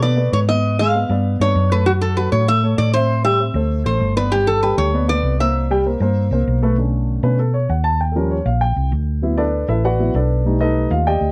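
Driving and sultry, this jazz excerpt in B minor moves at 196 BPM in a straight 4/4, with a metallic, nasal resonator slide guitar played with fingerpicks carrying the melody up front until 6.4 seconds, bathed in plate reverb. A dark, mellow, woody upright piano supplies accompaniment before taking a solo from 6.8 seconds over chords such as Bm9, D#9 and B7alt, while a round, amped hollow-body short-scale electric bass, fingered and up front, anchors the low end throughout. The production is dark and warm with light reverb, and the tuning sits at A4 = 445 Hz.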